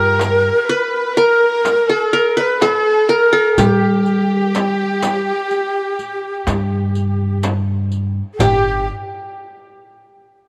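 Stately and festive, this 10/8 Arabic maqam ensemble piece, cut from a longer work, puts a bright-edged, plectrum-plucked qanun up front on the melody while a breathy, tongued ney and a smooth, bowed violin section with vibrato carry second lines, a woody, thumpy pizzicato upright bass anchors the low end, and from 0.2 seconds a clay-shelled darbuka and small frame drum sit in the background beside a close riq with dark jingles, the ensemble set in a moderate plate reverb.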